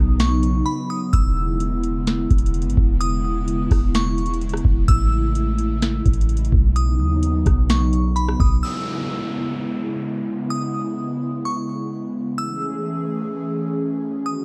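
A glassy, crystalline FM bell melody floats over a breathy, detuned pad whose sustained chords pump gently against the beat, opening this blissful, atmospheric cloud-rap excerpt in E major at 128 BPM with a half-time feel. A boomy sine 808 bass and an analog drum machine with a deep kick, tonal snare, metallic hats and rim clicks sit up front, moving through Badd9, E6 and Amaj7 in a dark production with light reverb. At 8.6 seconds the bass and drums stop, and a downlifter sweeps beneath the bell and pad until 12.4 seconds.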